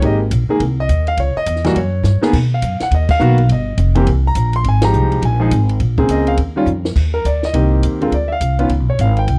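Relaxed and warm, this swinging jazz piano trio passage pairs a clear, intimate concert grand carrying the melody, its action noise audible, with an up-front, woody pizzicato upright bass and a compact cocktail kit of dark cymbals, high-tuned snare and punchy kick that drops in fills at 2.0 and 6.7 seconds, set in a dry, close 1970s-style studio sound.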